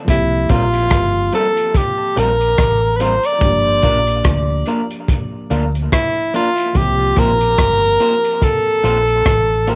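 A clear, up-front tenor saxophone with light vibrato and tape echo sings a smooth, longing melody over a slow 72 BPM lovers rock reggae groove, backed by a gritty, saturated breakbeat kit of hi-hat, tight kick and rim click, a round, foam-muted fingered bass, dark picked guitar stabs through a small old amp with analog delay entering at 0.5 seconds, and a worn, slightly out-of-tune tine electric piano in the background, all moving between C7sus4 and Gm7 in this cassette-recorded excerpt from a longer piece.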